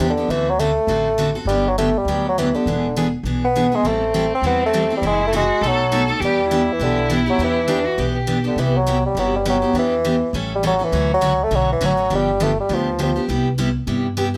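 A brisk swing at 203 BPM in 4/4 drives this bittersweet, virtuosic slice of jazz manouche in E minor, cut from a longer piece. A picked steel-string acoustic guitar sits up front with a bright, full-bodied jumbo tone and audible finger squeak. Beneath it a pizzicato upright bass gives a woody, thumpy low end. The bassoon carries the melody in a warm, classical style, standing out as the up-front solo voice. From 3.8 to 8.4 seconds a single bowed violin adds a distant second line, expressive with vibrato and portamento. The harmony moves through seventh chords such as Gmaj7, F#m7b5 and B7 before shifting to a new section at 8.6 seconds, all set in a moderate studio reverb.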